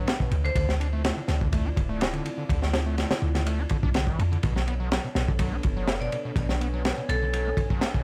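A lightly reverberant mix opens this funky, swaggering breakbeat excerpt, with a crunchy, saturated acoustic drum kit of punchy kick, high-tuned snare and dark ride cymbal sitting up front over a deep, boomy 808-style bass. A screaming, squelchy sawtooth acid riff runs through distortion, chorus and digital delay, while a moody analog pad holds sustained chords in the background with phaser and sidechain pumping, moving from Dm9 to Bm9 at 4.4 seconds. A bright, metallic vibraphone struck with hard mallets flickers in at 0.4 seconds and returns at 6.0 seconds, its ringing tone roughened by 12-bit sampler grit, a small-speaker sound and digital delay.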